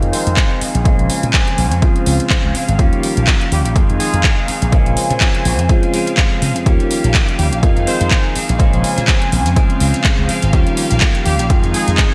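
A swung sixteenth-note groove in 4/4 drives this funky, groovy slice of filtered disco house, with a punchy, tape-warm electronic kick sitting up front from 0.4 seconds and a layered house kit adding handclaps and metallic hi-hats, their hats and cymbals pumping against the sidechain in a gated-reverb space. Maracas sit barely audible in a live room beneath a bright, amped slap bass whose envelope filter and tube saturation give it a punchy bite. A dark, mellow concert grand piano carries the accompaniment through a phaser and gritty 12-bit sampler texture, while a clean, picked electric guitar riff shimmers with lush chorus in the background. A studio string section holds bowed chords that are biting and intense yet smooth on top, and a clear, pop-style horn section states the melody in octave doubling with vibrato and digital delay, dropping out around 4.5 seconds and returning near 7.4. 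A filter sweep runs across the whole cycle of minor and extended seventh and ninth chords, and the melodic parts all pump and sit under a low-pass filter within a 1980s-style digital production.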